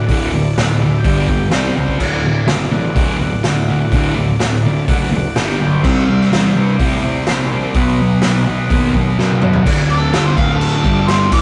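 Garage rock at 125 BPM in D mixolydian, swaggering and rowdy, built on a thick, double-tracked fuzz guitar riff up front and a saturated, gritty drum kit with punchy kick and medium-tuned snare pumping in a bright stone room, while a growly overdriven fuzz bass and buzzy vintage combo organ chords sit in the background. The organ slips in a fill between 1.0 and 2.0 seconds, and a drum fill at 9.2 seconds leads into a new section where a mellow, overdriven harmonica enters at 9.9 seconds with light vibrato and scooped notes. The rough rehearsal-room sound carries moderate stone-room reverb and warm saturation, cut from a longer piece.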